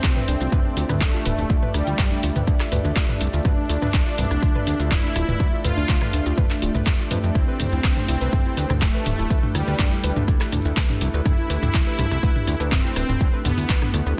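A straight 4/4 pulse at 123 BPM drives this dramatic, melancholic melodic techno excerpt, with a deep, layered electronic kick up front beside a dry, punchy analog drum machine playing handclaps, hi-hat, rim click, shaker and toms. A fat, saturated, detuned bass anchors the low end beneath a smooth soft supersaw melody coloured by phaser and delay, while a gentle, round pluck plays chorused, delayed arpeggios in the background. A moody, nasal analog pad holds sustained chords and an ethereal, airy pad adds reverberant texture; the bass, melody, pluck and both pads pump with sidechain as the harmony moves from Dm7 to Am/D at 7.4 seconds, all within a dense, heavily limited modern master.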